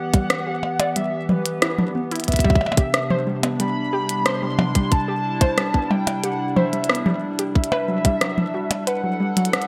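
A bright, 1980s-style digital sheen and a moderate plate reverb frame this eerie, intricate IDM fragment, cut from a longer piece. A detuned, tape-like pad holds slow-blooming chords built from square and triangle tones, while a nostalgic lead sings a mellow, vibrato-laced melody through lush chorus, cassette tape coloring and digital delay. Between them, a dusty, lo-fi pluck with a noise layer and a filter sweep spins arpeggios, its short decay trailed by its own delay. Up front, a tight electronic kick sits loudest in the mix until about 8.2 seconds, while a glitchy kit of clicky hi-hats, percussion blips, rim clicks and toms, dressed in gated reverb, keeps a straight 4/4 pulse. The harmony moves from Em7 to Cmaj7 at 2.3 seconds and settles on Gmaj7 at 7.6 seconds.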